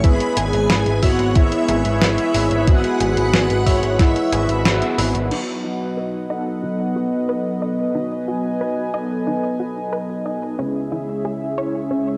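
A thumpy, up-front electronic kick drives this nostalgic, dreamy synthwave piece at 91 BPM, alongside a 12-bit drum machine with a fat snare, hi-hat and crash, an overdriven picked electric bass, a dark octave-layered synth lead with tremolo and vibrato over shimmering string-machine violins, a smooth sawtooth pad with sidechain pumping, round analog pluck arpeggios in the background and brassy, phased synth stabs, until the kick drops out at 4.7 s for a band accent and the drums, bass, lead and strings have all stopped by 5.4 s, leaving pad, brass and a filter-swept arpeggio in a lightly reverberant cassette home recording.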